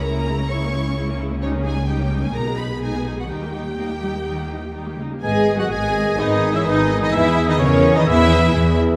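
Steeped in a wet concert-hall reverb, this restless, urgent excerpt from a fast romantic symphonic movement in G# minor at 127 BPM opens with lush, vibrato-rich violins carrying the melody over a background second violin line, smooth violas, focused cellos and up-front double basses, before an airy flute, a warm oboe, mellow French horns, dark, very quiet trombones and a warm trumpet with stabs join at 5.2 seconds to thicken the drive toward its close.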